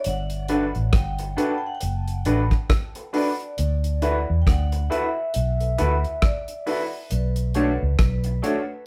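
A ringing, metallic vibraphone melody with slow motor vibrato and dub echo opens this romantic, sweet lovers rock reggae excerpt at 68 BPM in D major, alongside a dry, damped drum kit playing hi-hat, a tight kick and rim click over a swung sixteenth feel. A dark, round, foam-muted fingered bass sits up front with the drums, while a natural-sounding baby grand piano and a twangy, slightly broken-up, lo-fi picked guitar through a small old amp enter at 0.5 seconds over chords moving from Gmaj7 to D69 to Bm7. The band plays live together in one room with moderate studio reverb.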